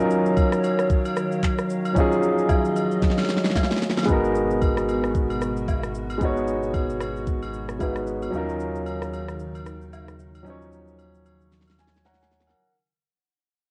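A warm, up-front grand piano opens this soulful, late-night amapiano cut from a longer piece, playing accompaniment over D#m9 and G#m9 chords in G# dorian at 113 BPM with a 16th-note swing. Beneath it, a hollow, flute-like pad holds sustained chords in the background, its warbling ensemble chorus and sidechain pumping giving it a vintage, breathing quality. The smooth R&B drum kit sits up front with a knocking kick, fat snare, handclaps, rim click and shaker, carrying a gritty 12-bit sampler and cassette-tape character, while distant agogo bells and woodblock add acoustic colour from 0.4 seconds. A round, dark analog bass joins at 4.1 seconds as the second section begins and the music starts a gradual fade-out, with drum fills marking both section ends and a grand piano fill from 11.5 seconds closing the excerpt. The whole piece has the intimate feel of a home cassette recording in a small room.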